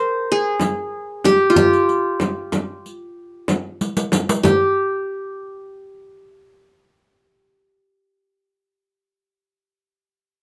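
Turkish makam ensemble music in G makam kurdi, tuned to A4 = 438 Hz, moves at 188 eighth-note beats per minute in a straight 9/8 with a longing, hypnotic mood, captured in a moderate small room. An up-front, plectrum-plucked qanun with glinting, bright-edged triple strings carries the melody between F4 and C5 throughout. At 0.6 seconds a small, compressed and saturated frame drum struck with hard hands enters together with a close, dry riq with dark jingles, and after a drum fill at 3.8 seconds the percussion stops at 4.7 seconds, leaving the qanun alone.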